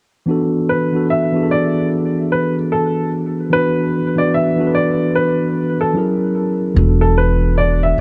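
A clear, intimate upright piano carries the melody in this reflective, hazy hip hop excerpt, its short-sustained notes softened by a low-pass filter and trailed by tape echo, with the faint noise of its action audible up close. Beneath it, from 0.3 s, a mellow tine electric piano plays the accompaniment, clean and heard through its built-in speakers, also low-pass filtered. The groove sits at 74 BPM in 4/4 with a lazy 60% swing on the sixteenths, and the tuning rests slightly sharp at A4 = 441 Hz. The harmony hangs on E7sus4, moves to F#7, and returns to E7sus4 just as a thumpy, dark pizzicato upright bass with gut strings enters at 6.8 s on a low E. Light reverb and small room ambience frame the parts, and the whole passage carries the soft grain of cassette tape.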